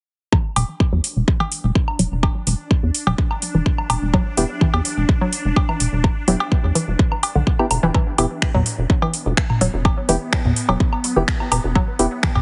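Sparse and quirky, this minimal techno excerpt runs on a straight 4/4 pulse, led by a punchy, up-front electronic kick and a house kit of finger snaps and metallic hats, both tape-warm and re-recorded in a small room. Electronic woodblock, cowbell and toms add analog-flavoured accents through digital delay, while a rubbery, wave-folded square bass with a moving notch and saturated, dark tone sits prominently underneath. A hollow square pluck riff, treated with chorus, phaser, cassette tape character and tape echo, pumps alongside the bass, and filter sweeps move across an analog synth bass and a synth arpeggio through the first 7.9 seconds. A swarming, detuned granular drone hovers in the background from 1.2 seconds, and a percussive, organ-like stab with a noise layer enters at 4.4 seconds, coloured by chorus and digital delay. The harmony settles on E minor in the second section, all under a heavily compressed, radio-like sound with light reverb and a rolled-off top end.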